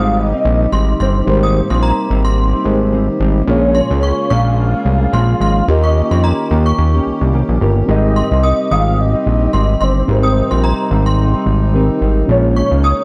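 Indie pop with a bedroom-pop haze, this nostalgic 13-second snippet from a longer piece moves at 109 BPM in 4/4 with a light sixteenth-note swing, sitting in Ab major over a progression that drifts from Abmaj7 through Bbm7 and Eb7, returns to Abmaj7 and steps back to Bbm7. A soft, round, octave-layered synth lead carries the melody, its detuned triangle-and-sine tone dressed in phaser, ensemble chorus, vibrato and slapback echo, while an inharmonic FM synth chime rings and decays above it as a second line with its own chorus and slapback. Underneath, a fat, saturated analog bass with a detuned sawtooth edge and a plucky filter sits up front. In the background, a clean, fingered electric guitar with chorus and vibrato effect, a reedy electric piano pulsing with medium tremolo and a cassette-tape grain, and a breathing, airy hand-pumped harmonium holding sustained chords fill in the harmony. 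Light reverb and digital ambience wrap it all in a dark, warm production.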